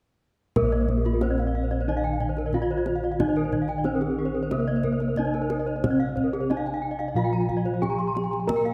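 This shimmering, ceremonial Balinese gamelan excerpt, cut from a longer piece, opens at 0.6 seconds with the whole ensemble sounding at once in a steady, straight four-beat pulse. Bronze metallophones carry the melody, a lower accompaniment line and two layers of high arpeggios, their paired tuning producing the characteristic beating shimmer. Most are struck with wooden mallets for a ringing, metallic tone, though one, played with a horn mallet, sounds especially bright, and one arpeggio part carries a slapback echo. Beneath them, bossed gongs played with padded beaters give a round, mellow, up-front bass. A kendang, tight and played with soft hands, sits in the background. The ensemble rings out in a moderate concert-hall reverb until about 8.7 seconds.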